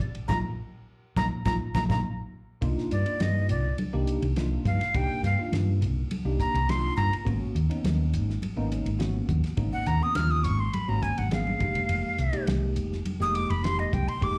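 Heard through a club PA in a small, reverberant room, this slick, driving electric jazz fusion cut in C minor at 103 BPM opens on a band accent before a breathy, vibrato-laced flute with crisp chiff takes an up-front solo from 2.6 s over Cm11, Abm11 and Fm11 chords, carried by a round, punchy hollow-body electric bass, bell-like tine electric piano with analog chorus and slapback echo, soft-handed congas in the background, and a damped 70s drum kit with a fat snare and dark cymbals that plays fills at 1.5 and 11.2 s.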